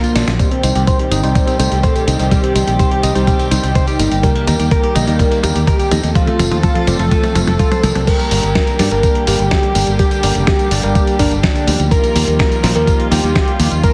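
A thick, detuned sawtooth unison lead with a sub octave, vibrato and tape echo carries the bittersweet, nostalgic melody in this italo disco excerpt at 125 BPM in G minor, over a growly, bright fingered electric bass and a thumpy, gritty electronic kick re-recorded in a large room. A dusty soul sampler-style kit adds snare, hi-hat, tambourine, toms and crash, opening with a drum fill, while an intimate chamber string section holds bowed sul tasto chords with light vibrato. In the background, a clean picked electric guitar plays arpeggios through filter sweeps and tape echo until 8.0 s, and a bell-like tine electric piano plays filtered stabs; the mix has plate reverb and a heavily compressed radio sound as the chords move from Cm through Eb and F to Gm at 8.1 s.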